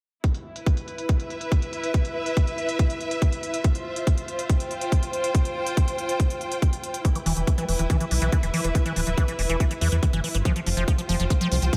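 A tight, tape-tinged electronic kick drives this intense, hypnotic psychedelic trance excerpt at 141 BPM in E phrygian, with crisp, low-passed hi-hats and a lush, distant string section pumping beneath, until a squelchy, resonant acid bass riff with phaser and dub echo arrives at 7.0 seconds and a deep, round, detuned analog bass joins at 7.3 seconds. The kick and hats are re-recorded in a large room, and light reverb colours the whole mix.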